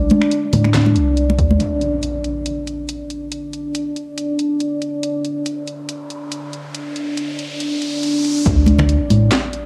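A dark, heavy deep dubstep excerpt opens on a moody, detuned ambient pad with a warbling, vintage cassette character, holding sustained chords over a soft, round sub bass and dry, close congas played with hard hands. The garage kit of finger snaps, handclaps, hi-hat and a cracking snare sits low and overdriven beneath the half-time, lightly swung groove, and a punchy, overdriven electronic kick lands briefly at 1.4 seconds. At 1.6 seconds the bass and congas drop away, an electronic impact hits, and the pad is filtered while the kit carries on through the long middle stretch, with a riser building from 6.1 seconds. At 8.5 seconds the drop arrives with another impact, bringing back the kick, sub bass and congas under a D5 chord for a short, weighty close. The excerpt has a homemade cassette grain and a moderate spring reverb that adds a dim, hazy space.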